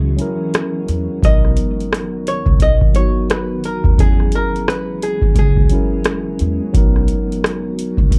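Lo-fi hip hop at 87 BPM in B major with a swung, dreamy and cosy feel, where a mellow tine electric piano with cassette-tape coloring and a blurred granular cloud pad in the background hold chords moving between E69 and Bmaj7, a woody pizzicato upright bass anchors the low end, a booming analog drum machine with a deep kick, metallic hats and rim clicks sits up front from 0.2 seconds, and a compressed hollow-body archtop guitar picks a clean melody from 1.2 to 6.4 seconds, set in a dry, dark production.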